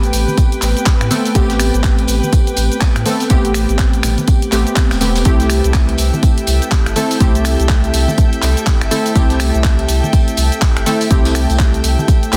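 Deep house with a deep, moody feel and a swung groove, built on a punchy, up-front electronic kick, a layered house kit of finger snaps, handclaps, hi-hat and shaker with soft clipping on the snare, a very quiet brushed acoustic kit, and damped, low-tuned congas in the background. A round sine sub bass pumps under detuned sawtooth keyboard stabs treated with chorus and tape echo, while a dark, bowed string section floats above as the harmony moves from Am9 to C6 at 5.3 seconds. A shimmering string machine with ensemble chorus enters at that point, and a warbling, lo-fi pad with phaser and reverb joins at 6.3 seconds in this dense, heavily limited mix.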